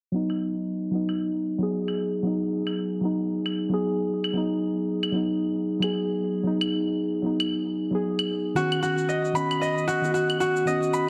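Organic downtempo at 114 BPM in G# minor pentatonic with a meditative mood and a swung 16th feel, where muted, dark felt-like synth keys with chorus, delay and a filter sweep hold a G#m7 from 0.1 seconds over overdriven, room-recorded electronic claves and shaker, until a fingerpicked, ringing concert harp enters up front at 8.6 seconds with delayed arpeggios over Badd9, all set in a lush hall reverb with a heavily compressed, radio-like sound in this short cut from a longer piece.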